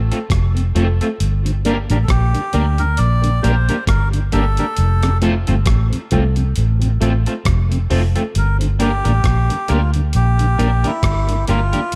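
A loping 4/4 groove with swung sixteenths sets a serious, laid-back roots reggae mood, carried by a compressed, gritty sampler-style kit of hi-hat, rim click and thumpy kick, under a dark, round, foam-muted fingered bass sitting up front. A twangy, slightly broken-up electric guitar with analog chorus and dub echo and a mellow tonewheel organ with slow rotary speaker and echo, tucked in the background, supply the accompaniment over a shifting F and G minor harmony. At 2.0 seconds a reedy, breathy, close-miked melodica takes the melody with its own dub echo, all in a dry recording with little reverb on a section cut from a longer piece.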